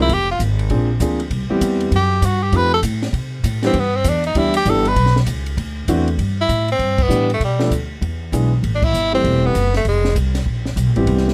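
An edgy tenor saxophone solos with forceful vibrato over an intimate grand piano with audible action noise, woody, thumpy gut-string upright bass and a compact cocktail kit with dark cymbals, a high-tuned snare and punchy kick in this relaxed small-group swing and bop passage in G major at 197 BPM, heard in a dry, nearly reverb-free room as the band hits accents at 7.0 and 8.8 seconds before the saxophone stops at 10.2 seconds.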